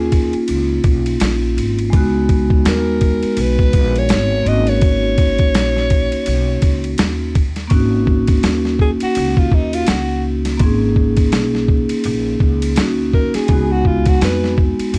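A breathy alto saxophone, vibraphone and upright bass open this cool, mellow jazz-hop excerpt together, with a boom bap drum kit landing a moment later in a swung groove. The sampler-style kit sits up front, compressed and pitched down, with a thumpy kick, a medium-tuned snare, hi-hat and ride cymbal. Beneath it, the plucked upright bass is woody and growly, its dark steel-string tone roughened by tube saturation, while the vibraphone, played with medium mallets and the motor off, rings with a metallic tone in a boxy small room. The alto carries the melody with a soft attack, gentle vibrato and a whispered, intimate quality, stepping into a solo from 7.7 seconds and stopping at 14.6 seconds. Suspended harmonies hold most of the way before shifting to a C#9sus4 at 13.5 seconds, all framed by light reverb, a dry, gritty hardware sound and vinyl crackle.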